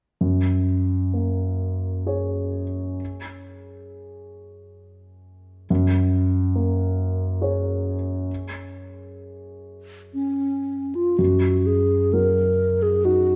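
A rubato 3/4 sway at 54-71 BPM carries this dreamy, pastoral impressionist classical duo in F# major, where a dark, mellow concert grand with deep bass and audible action noise lays an intimate F#add9 accompaniment from 0.2 s, joined at 10.1 s by a hollow, airy alto flute with vibrato and a crisp attack up front, just before the harmony settles onto F#69 at 11.2 s, with both instruments set in a moderate recital hall reverb in this fragment cut from a longer piece.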